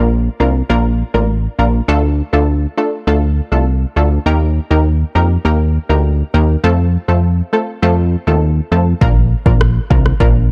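A bright, detuned chord stab with chorus and a plucky, funky analog bass open this bouncy, sunny dancehall excerpt in Bb major at 101 BPM, moving through Bb, Dm, Eb and F in a straight 4/4. The sawtooth-and-pulse bass sits up front with a fast-attack filter pluck that evolves as it decays, while the stab's saw-and-square tone stays short. A layered electronic drum kit with a punchy kick and rim click enters at 9.0 seconds, all set in a dark, warm digital ambience.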